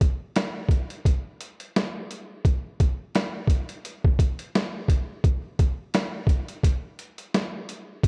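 Tough and reflective, this 86 BPM hip hop cut swings its 16ths at 56% around a boom bap sampler-style drum kit of kick, snare and hi-hat that sits up front, pitched down, compressed and gritty with a thumpy kick, a medium-tuned snare and the sound of being re-recorded in a large room, while worn, warbling cassette tape with pitch drift colours the dry recording.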